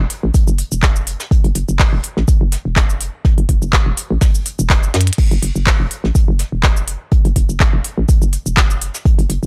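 A hollow, bouncy FM bass anchors this cool, quirky minimal techno cut from a longer piece, starting at 0.0 seconds with fast-attack, decaying notes between E1 and F#2 that pump against the sidechain. A deep electronic kick, re-recorded in a large room, sits up front beside it from 0.3 seconds, driving a 124 BPM groove in 4/4 with a 55% swing on the sixteenths. An electronic click kit, also re-recorded in a large room, adds clicky hi-hats, handclaps, shaker and crash cymbal. Further back, a soft brush kit played in a small room contributes a fat snare and hi-hat, both high-pass filtered. A drum fill arrives at 4.9 seconds, and the whole piece has a dry, gritty hardware sound with little reverb.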